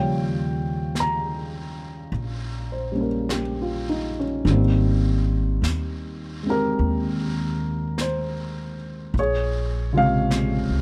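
A dark, mellow baby grand piano anchors this brief late-night jazz ballad fragment, sitting up front with its action noise audible for an intimate, natural feel. It carries the accompaniment in Ab major at a slow 51 BPM in 4/4, with a lilting swing on the eighth notes, moving through Eb9, Abmaj9 and Bbm7. A woody pizzicato upright bass on steel strings sits close beside it, holding down the low end. A brushed jazz kit comes in at 1.0 s, mixed lower with a medium-tuned snare and hi-hat and a rolled-off top that keeps it soft behind the other two. The sound is dry and close, like a 1970s studio session, giving the romantic mood a hushed, personal quality across its 10.8 seconds.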